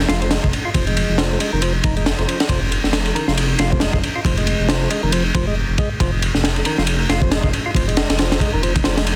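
A crunchy, swung breakbeat at 137 BPM in F minor drives this funky, gritty excerpt, its up-front acoustic kit pairing a punchy kick and high-tuned snare with dark cymbals, while a deep, rumbling detuned saw bass holds F1 under a fat, lightly overdriven tonewheel organ riff that is percussive through its stopped rotary speaker, with digital delay, all sitting on a single Fm7 chord in a small room with a dense, heavily limited master.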